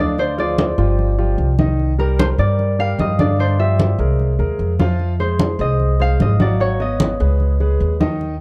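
A woody, dark upright bass sits up front in this lively, sophisticated Afro-Cuban jazz excerpt, its pizzicato steel strings playing low between G1 and G2 at 150 BPM in a straight 4/4. Above it, a mellow, fingerpicked concert harp carries the melody from Bb4 to F5, its acoustic notes ringing. A warm concert grand piano with natural tone and deep bass supplies the accompaniment across a broad range from D3 to Gb5. Medium-tuned congas join at 0.2 seconds, sounding compressed and saturated, with a drum fill arriving at 4.8 seconds. The harmony moves through colourful chords such as Ddim, Cm7, C7alt, Fm7, Abm7 and Dbsus2, all set in light reverb within a dark production.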